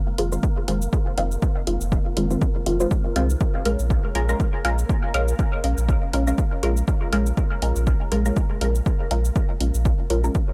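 A swung 4/4 groove at 121 BPM drives this short dub techno excerpt, with a punchy analog kick sitting up front and a light electronic hi-hat and shaker ticking beneath it. A clean, smooth sine sub bass enters at 0.2 seconds, given a touch of transformer saturation and sidechain pumping. Over this, a muted, detuned sawtooth chord stab carries the harmony from Fm7 to Bbm7 at 3.4 seconds, its short plucked decay colored by phaser, dub echo and sidechain pumping while a filter sweep runs across its whole length. A faint, breathy wind-like noise texture with its own reverb hangs far behind. The mood is deep and hypnotic, and the sound is dry and gritty, as if captured straight from hardware.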